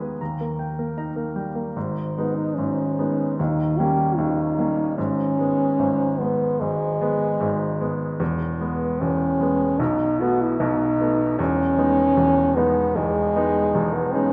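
A moderate stage-like reverb surrounds this melancholic, solemn romantic classical excerpt in G# minor at a rubato 75 BPM, where a clear, polished baby grand piano sets out the accompaniment alone before a mellow French horn, with light vibrato and a soft attack, enters at 2.2 s to carry the melody over chords moving from G#m and D#7 toward E, B7 and Emaj7.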